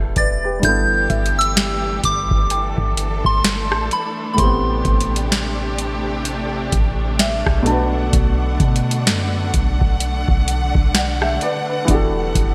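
A dark, mellow baby grand piano and a round, deep 808-style bass open this romantic, smooth contemporary R&B passage in G major at a slow 64 BPM with a gentle 16th-note swing, moving through chords such as Em11, G69, Am9 and Bm7. A booming analog drum machine with a deep kick, crisp snare, metallic hats and gated reverb sits up front, while a pure FM synth bell carries the melody through chorus, phaser and delay until 7.6 s, and a lush, bowed string section enters with sidechain pumping beneath it. A faint triangle-and-sawtooth pluck with ring modulation glimmers in the background early on, the piano adds a fill at 6.7 s, and the whole excerpt is bathed in a hall reverb with bright 1980s-style digital sheen.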